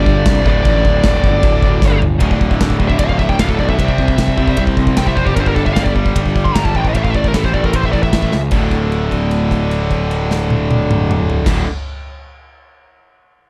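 In a straight four-four pulse, this epic, aggressive heavy metal passage sets a tight, double-tracked distorted guitar riff and a growly, fuzz-laden picked bass against an up-front acoustic rock kit of punchy kick, medium-tuned snare, toms and bright crash and ride cymbals, while a dark, high-gain lead guitar with delay carries the melody and launches into a solo at 2.2 s before dropping out at 8.4 s, the drums marking the turns with fills, all within a dry, warm production.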